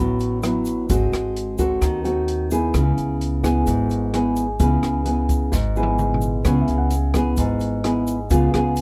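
Bossa nova in C# minor at 130 BPM, smooth and intimate, cut from a longer piece, with an up-front, thumb-plucked classical nylon-string guitar voicing chords like D69, G#7b9 and C#m7 over a woody, thumpy pizzicato upright bass on gut strings. An acoustic jazz kit with a boomy kick and a medium-tuned snare sets a dark, small-room groove, joined by a grainy tube shaker in the background, and a drum fill runs from 5.5 to 6.5 seconds. A baby grand piano adds a few natural high notes in the background from 6.4 seconds, all captured with close, detailed microphones and little reverb.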